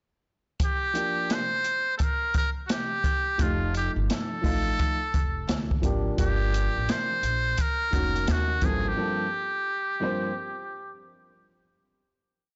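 A muted trumpet and an open jazz drum kit start together at 0.6 seconds, setting up a cool, mellow jazz-hop piece in G minor at 86 BPM with a swung sixteenth-note feel. The trumpet, buzzy and thin behind its metal mute, sits up front playing a jazz-style solo built on short call phrases, with vibrato and a slapback echo trailing its notes. The drums lay down a boom-bap beat from a small room, with a boomy kick, a medium-tuned backbeat snare and hi-hat, all dark and rolled-off on top, while a dark grand piano enters just after with mellow, free comping in drop-2 voicings over chords moving from Gm7 through F9 and Ebm7. At 3.4 seconds a woody pizzicato upright bass joins with a growly, tube-saturated, syncopated line full of slides and chromatic approach notes, staying until just before 9 seconds. The whole recording is blown-out and overdriven with a light reverb and a muffled top end, and the piece closes on a Gm11 as the trumpet holds on alone to 11.1 seconds.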